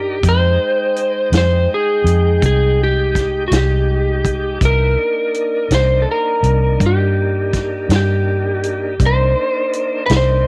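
A dark, slightly broken-up electric slide guitar played with fingerpicks carries the melody up front in this soulful, mournful slow blues in C minor, moving at 55 BPM in 12/8. Alongside it, a round, foam-muted vintage electric bass punches through, while a smooth tonewheel organ holds sustained chords through a slow rotary speaker with chorus vibrato. A dry soul drum kit with a tight kick, medium-tuned snare and hi-hat sits in a small room as the harmony shifts from Fm7 to Cm7 at 4.6 seconds.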